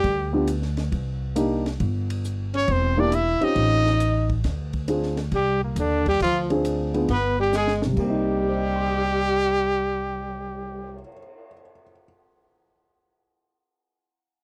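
A dry, close 1970s-style studio sound frames this moody, late-night excerpt of small-group swing and bop jazz in C minor at 136 BPM: a bright trumpet with vibrato carries the melody up front over a breathy tenor saxophone's subtone second line, a woody, growly pizzicato upright bass, a mellow, intimate baby grand piano with audible action noise entering at 0.3 seconds, and a compact cocktail drum kit with dark cymbals, a high-tuned snare and a punchy kick that plays a fill from 7.5 to 8.0 seconds.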